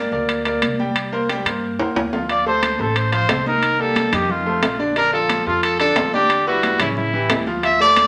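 A 180 BPM salsa groove in 4/4 opens this joyful, danceable latin excerpt, with a brilliant, vintage grand piano up front and a woody, thumpy pizzicato upright bass from the start, high-tuned congas sitting distant in the background, and close and dry ringing timbales. A drum fill arrives at 1.8 seconds, and a punchy, roomy trumpet with light vibrato takes the solo melody up front from 2.3 seconds as the chords move from Gm through Dm7, Bbmaj7 and A7 in a large studio reverb.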